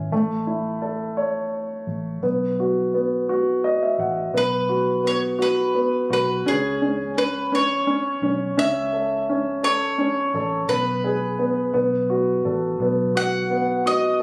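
A swaying, romantic six-eight pop ballad at 57 BPM, cut from a longer piece, where a clear, polished baby grand piano carries the accompaniment with a fill from 3.3 to 4.3 seconds, a dark, foam-muted vintage electric bass sits round and punchy beneath it, and a bright bowl-back mandolin with picked double strings enters up front with the melody at 4.4 seconds, all set in a moderate echo-chamber reverb with small-room ambience and the slightly informal sound of a phone recording.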